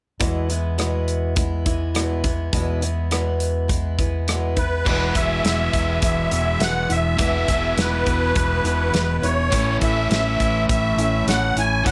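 A lightly reverberant studio sound frames this hopeful, open-road folk rock and heartland rock at 103 BPM in 4/4, where a woody, boxy ladder-braced acoustic guitar with old strings, a round, punchy fingered electric bass and an up-front loose indie drum kit with dark cymbals hold an E chord from 0.2 s, joined at 4.6 s by a reedy, shimmering musette accordion melody and then by a bright, double-tracked overdriven guitar riff, before the harmony moves to A at 9.5 s.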